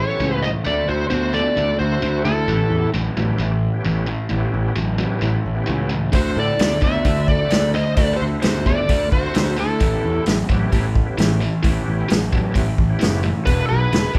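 Blues rock and southern rock in a gritty, raunchy power-trio vein, this excerpt moves at 131 BPM in a straight 4/4 in A mixolydian, cycling through A7, D7 and E7 chords. An up-front overdriven slide guitar carries the melody in short phrases, shadowed by a bright, picked lead guitar in the background, while a sludgy, double-tracked distorted guitar riff and a punchy fuzz bass drive throughout, with a thick, overdriven tonewheel organ holding sustained chords through a slow rotary speaker and chorus vibrato. A vintage acoustic drum kit with a punchy kick, medium-tuned snare and rolled-off top enters at 6.1 seconds, and the whole band sounds live in one room with light reverb.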